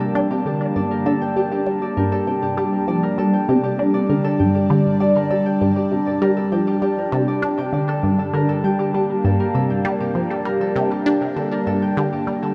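Over a straight 4/4 pulse, this hypnotic, cosmic slice of sequencer-driven space music is cut from a longer piece. A resonant blip pluck enters at 0.2 s with a juicy, squelchy riff in the low register: detuned sawtooth and triangle tones with ring modulation, a fast attack and short decay, colored by phaser and tape echo and placed up front. A swirling, evolving phased analog pad holds sustained chords with a slow attack and long release, its detuned sawtooth sound treated with phaser and chorus and also sitting forward. Further back in the mix, a fingerpicked Celtic harp plays ringing acoustic arpeggios, softened by a low-pass filter and trailed by tape echo. The whole piece is bathed in a wet, huge ambient reverb with a 7.0 s decay.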